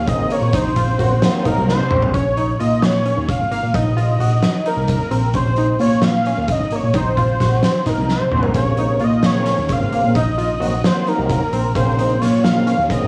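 A driving, tense progressive instrumental in 7/8, cut from a longer piece, where a bold, warbling unison lead carries the melody up front over a fat analog bass and a tight, nasal sequenced synth spinning arpeggios through chorus and cassette tape. An oversized low-tuned drum kit pounds, gritty and saturated, with a boomy kick and fat snare in a pumping room, breaking into fills at 1.7 and 8.1 seconds. A lightly overdriven tonewheel organ with slow rotary speaker fills in briefly at the start and returns at 8.5 seconds, all cast in the feel of a home cassette recording with light reverb.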